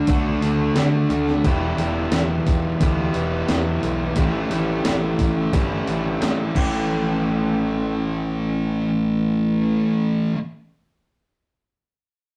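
A crisp, thumpy 8-bit drum machine sits up front from 0.1 to 6.7 seconds, driving a wistful, dreamy shoegaze and dream pop rock excerpt at 88 BPM in A mixolydian, where an overdriven electric guitar and a thick fuzz guitar play riffs over a direct picked electric bass, a very quiet, woody twelve-string acoustic guitar shimmers with arpeggios until 7.7 seconds, and chords move from D to Em to A7 in a rough rehearsal-room recording soaked in wet reverb.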